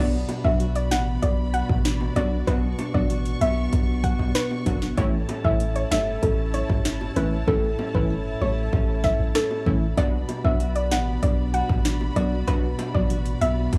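A straight 4/4 dancehall groove at 96 BPM in B minor drives this tough, bouncy clip: an overdriven electronic drum kit of deep kick, sharp snare, rim click and metallic hats arrives at 0.3 s with tight, high-tuned bongos in the background, while a punchy sine sub bass with a pitch-drop attack and tube saturation sits up front. Detuned sawtooth brass stabs with chorus and a soft, round pluck melody carrying chorus and analog delay ride over fingerpicked nylon-string guitar arpeggios and a quiet, intimate bowed string section with sidechain pumping, as the harmony moves from Bm to A and back. The hi-hats drop out from 7.5 to 10.0 s, and the dry, gritty sound carries transformer saturation and small room ambience.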